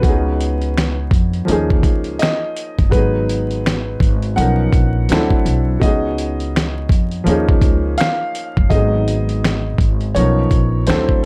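A hazy, melancholic lo-fi hip hop fragment opens with everything at once: a dusty, sampler-style drum kit of thumpy kick, fat snare, hi-hat and finger snaps, sitting up front with a gritty, compressed character and the feel of being re-recorded in a small room. Beneath it, a pizzicato upright bass with steel strings sounds woody and close, anchoring the low end. A felt-muted upright piano supplies soft, mellow, intimate accompaniment. Above it, a clearer, somewhat boxy upright piano carries the melody in a narrow upper range, both pianos bathed in plate reverb. The swung groove moves through suspended ninth chords, a minor seventh and a bright major ninth voicing, cycling through the progression twice before the cut at about 11.3 seconds. A dark, warm production with vinyl crackle and light reverb wraps the whole fragment in a faded, late-night glow.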